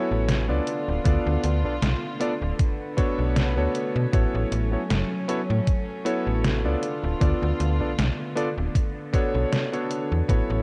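Heard through a cassette-tape sheen with light reverb, this dreamy, nostalgic vaporwave excerpt moves at 78 BPM in 4/4 with a gentle swing on the 16ths. A vintage electric grand piano with a clangy low end, subtle chorus, 12-bit sampler grit and tape echo plays the accompaniment over a dark, floating string section whose soft-attack bowed chords carry the same gritty sampler texture through A69, Dm6 and Bm9. A snappy, metallic FM slap bass sits up front, an overdriven, detuned 8-bit drum machine brings hi-hat and a medium-tuned snare from 0.3 s, and a thumpy, overdriven electronic kick joins at 1.1 s, both drums re-recorded in a large room.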